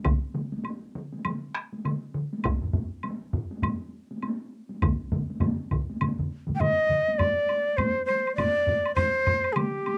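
Ceremonial and powerful, this Japanese traditional taiko passage, cut from a longer piece, moves at 101 BPM in a swung 4/4 and has the feel of a home cassette recording with light reverb. Layered taiko ensembles struck with hard and heavy sticks range from a distant, large-room boom to a compressed, saturated pulse and a close, dry hit up front, all alongside a woody, close and dry woodblock. At 6.6 seconds a breathy, bright bamboo shakuhachi enters up front with vibrato, crisp chiff-laden attacks and a cassette-tape tint, carrying the melody in the miyako bushi mode on G.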